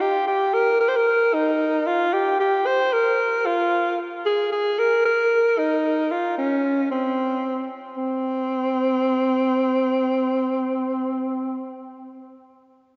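Soaked in a lush hall reverb with a dreamy, dark-edged mix, this soulful, hypnotic amapiano fragment at 113 BPM in C phrygian, swung on the sixteenths, features a solo alto saxophone up front, warm with vibrato, a smooth top, a pop-style phrasing and a touch of delay, carrying the melody from 0.0 until 11.6 s as the music shifts into a new section at 8.0 s.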